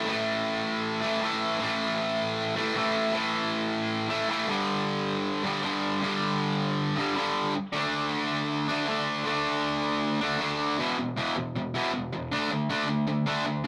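Punk excerpt at 157 BPM in a straight 4/4, where a bright, overdriven electric guitar plays alone and up front across the full 13.7 seconds, double-tracked and picked through power chords A5, G5 and D5 before shifting at 10.8 seconds to E5 and D5, all in an upbeat, rowdy rough rehearsal-room sound with light reverb and warm saturation.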